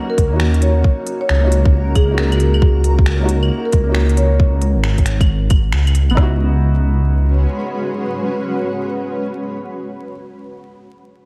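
A deep, rumbling detuned saw bass pumps under a tight kick and woody snare in this nocturnal, rainy future garage piece at 135 BPM in C# dorian, with swung 16ths and crisp hats, claves and finger snaps, the drum kit sounding tape-warm and re-recorded in a large room until about 6.2 s. A soft-mallet marimba carries a round, close-miked melody with analog delay until 4.4 s. Beneath it, a felt-muted upright piano with 12-bit sampler grit and tape echo and a cloudy, evolving granular pad with analog chorus both pump to the sidechain, holding D#m7/C# before shifting to C#m11 at 6.2 s, all under light reverb and vinyl crackle.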